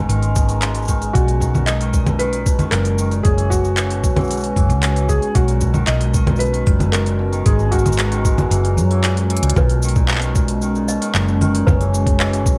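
Hopeful and warm, this folktronica excerpt moves at 114 BPM in a straight 4/4 in B major, cut from a longer piece. A warbling, lo-fi pad holds sustained chords under bright, shimmering hammered dulcimer arpeggios touched with tape echo and plate reverb, while a round, punchy hollow-body electric bass anchors the low end. An organic electronic kit of congas, handclaps, crisp hi-hat and shaker runs alongside a thumpy, overdriven kick that drops out from 8.5 to 9.6 seconds, with a drum fill at 9.3 seconds. A soft, intimate felt-muted upright piano carries the melody from 1.1 to 9.3 seconds over chords moving from G#m7 through Bmaj7 and F#7sus4. At 9.6 seconds the music shifts to a new section where a clanky, bell-like toy piano, slightly out of tune and sitting in the background, adds a second line.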